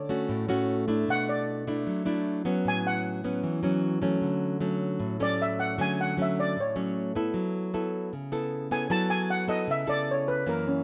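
A steel pan carries the melody from start to finish in this short bossa nova excerpt, its shimmering, metallic tone softened by rubber sticks into something mellow and up front. The mood is sophisticated and romantic, moving at 153 BPM in a straight 4/4 feel, first in A major and then shifting to F# minor at 4.2 s. A classical nylon-string guitar, fingerpicked and close in the mix, supplies the accompaniment throughout with a warm, acoustic sound. The harmony drifts through lush extended chords such as Dmaj7, Bm11, A69 and F#m7. Light reverb and close, detailed microphones give the recording an intimate, clear presence.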